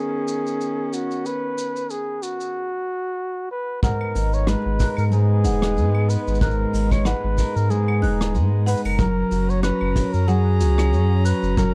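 A flugelhorn carries the melody in this playful, pastoral folktronica excerpt, its soft-edged jazz tone shaded by gentle vibrato and a tape echo. Beneath it, a bowed string quartet holds sustained chords with a reedy, gut-string period character, one player to a line. A soft brush kit of claves, hi-hat, rim click and shaker enters at 0.3 seconds with a lightly swung sixteenth-note feel. At 3.8 seconds the arrangement fills out: a fingerpicked steel-string acoustic guitar adds full-bodied arpeggios, a punchy kick drum joins, and a bright, woody marimba played with hard mallets traces a second line in the background, also touched by tape echo. A round sine sub bass arrives at 4.2 seconds, deep and up front, while the drums sound distant and roomy with a rolled-off top in a setting that carries little reverb.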